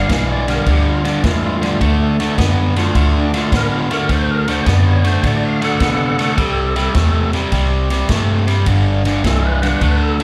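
Heard live through a club PA with light reverb, this laid-back, soulful electric blues shuffle swings at 105 BPM in G mixolydian over G13, D6, C6 and G5 chords, with a crunchy overdriven guitar riff carrying slapback echo up front, a woody, thumpy pizzicato upright bass, a reedy tonewheel organ with key click, slow rotary speaker, chorus vibrato and slapback echo in accompaniment, and a swinging big-band kit of punchy kick, snare and ride cymbal.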